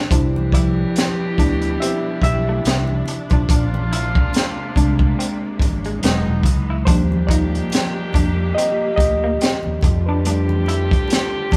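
A relaxed 71 BPM neo-soul groove in 4/4 with a swung sixteenth feel rides on a gritty, saturated breakbeat kit with a tight kick and high-tuned snare, a round, dark fingered bass and very quiet thick-skinned congas. A reedy, slightly out-of-tune electric piano with phaser takes the lead in this soulful fragment of a longer piece, while a lo-fi, slightly broken-up guitar adds a second line and a vintage horn section punches tight stabs. Lush bowed strings hold sustained chords in the background through a Cmaj9, Bb9, Emaj7, Ebmaj7 and F69 progression, all heard as a band playing live in one room with moderate reverb.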